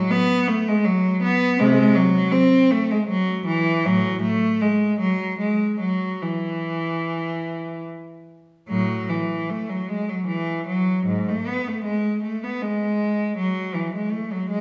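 A reverberant recital hall gives this short passage, cut from a longer piece, a radiant, flowing glow, with the bowed cello sitting up front and a 1.4-second tail blooming around it. In a baroque-style suite movement in 3/4 with a supple rubato, a single unaccompanied cellist plays from 0.0 to 14.6 seconds with a warm, smooth, even tone and vibrato. The opening idea returns at 8.7 seconds.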